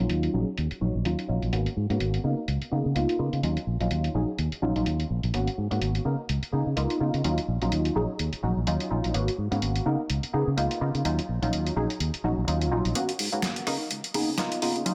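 Filtered disco house in Eb minor at 126 BPM, funky and sensual, with a 16th-note swing and a cycling Ebm9, Abm11 and Db13 progression. A punchy, dark sawtooth-and-square polysynth comp with a plucky filtered attack, chorus and phaser sits up front beside a warm, fingered electric bass. A gritty, compressed sampler-style kit of muffled hi-hat, rim click and medium-tuned snare comes in at 0.1 seconds under light reverb, and a filter sweep runs throughout, joined by a build-up from 13.0 seconds in this cut from a longer piece.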